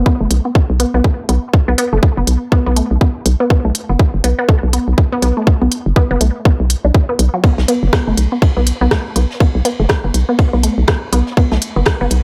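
A lightly reverberant, clinical minimal techno excerpt at 122 BPM with a cool, swung 16th-note feel, built on a hollow, knocking FM bass that pumps up front, a juicy, squelchy resonant blip pluck riff coloured by phaser, dub echo and sidechain pumping, a tight electronic kick and a crisp-hatted garage kit with rim clicks, both tape-warm and re-recorded in a large room, and a dark, smooth jazz brush kit with ride and high-tuned snare that enters quietly at 7.4 seconds.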